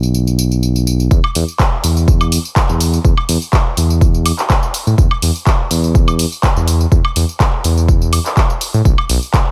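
A swung deep house groove at 124 BPM in 4/4 opens with a smooth, sidechain-pumped sawtooth-and-triangle synth bass up front and a dark-hatted kit of handclaps, hi-hat, tambourine and woodblock, until a punchy electronic kick drops in at 1.1 seconds to carry this smooth, deep, dry fragment of a longer piece.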